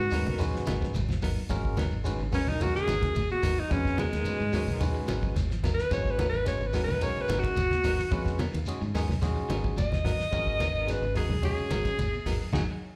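Heard as a live club gig through the venue's PA, this defiant, driving afrobeat excerpt at 109 BPM in G# dorian sits on a single G#m9 chord while a bright, up-front alto saxophone solos with light vibrato and slapback echo, over a round, foam-muted fingered bass, a barky, lightly overdriven tine electric piano, a very quiet clean guitar playing arpeggios, a second clean guitar adding stabs with tremolo in the background, low-tuned congas struck with hard hands, a grainy, distant shekere, and a dry 70s drum kit with a fat snare and tight kick that closes on a fill and band accent at 12.5 seconds.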